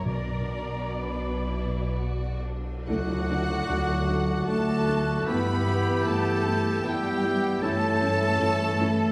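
This elegiac, melancholic fragment of a slow romantic orchestral movement in triple time opens on lush bowed strings: a smooth, warm violin section carries the melody over a clear second violin line, with violas, cellos and a rich, up-front double bass section all played with vibrato. An airy, hollow flute floats above as a second line, while a very quiet cymbal swell with tam-tam and a round, soft-mallet timpani stroke colour the opening B minor chord, the timpani falling silent by 1.4 seconds. At 2.9 seconds the harmony turns to D major with an ensemble accent, and the winds and brass enter together. Mellow clarinet and oboe add second lines, a dark bassoon joins the accompaniment, and French horns and trombones hold sustained chords beneath bright trumpet stabs, as the progression moves through Em/G to A7/G. The rubato playing sits in a reverberant concert hall, heard from further back in the room.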